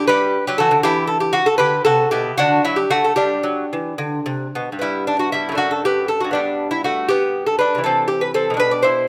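A solo lute carries this brief excerpt from a longer baroque-style dance in G major, tuned to A4 = 439 Hz. The gut strings are fingerpicked with a bright, delicate touch, and the doubled courses, some in octaves, give each note a shimmering fullness across a range from F#2 up to D5. The mood is radiant and flowing, moving in a lilting 6/8 at roughly 72-81 beats per minute counted in dotted quarters, with a free, rubato sense of time. The harmony circles around G and D, breaks briefly into an unaccompanied line, and after a new phrase begins at 4.8 seconds, passes through D/F# before reaching C near 7.8 seconds. The lute sits up front in a moderate recital-hall reverb, which lends the acoustic sound a gentle halo of space.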